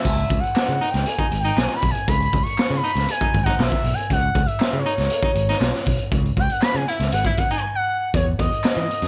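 Lightly reverberant, this hypnotic, funky cut of a longer piece runs at 119 BPM in C# minor, where a smooth, gliding sawtooth-and-triangle synth lead with chorus and vibrato solos over a bright, growly picked electric bass, a gritty, boomy-kicked garage drum kit with a saturated small-room sound, and very quiet crisp group handclaps, while a clear, distant baritone saxophone with slapback echo plays a second line from 0.8 to 7.6 seconds before a short break and a shift from C#m7 to an E-rooted chord at 8.1 seconds.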